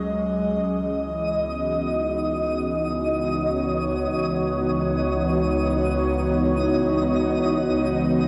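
Serene and melancholic, this ambient excerpt drifts in free time in C# minor, cut from a longer piece. An airy, breathy pad sits up front, holding sustained chords from E3 to D#5 with a slow attack, long release and a chorus-touched, tape-worn glow, moving from F#sus2/C# to C#m11 at 0.7 seconds. Beneath it, a bowed chamber double bass section holds a low C#2 throughout, earthy and smooth-topped with a light vibrato. From 1.2 seconds a twinkling granular texture sparkles between D#5 and D#6, bright with an octave-up shimmer and its own reverb. An organ-like drone, calm and barely audible, slips in at 5.1 seconds. The whole piece sits in a wet studio reverb with the soft grain of a home cassette recording.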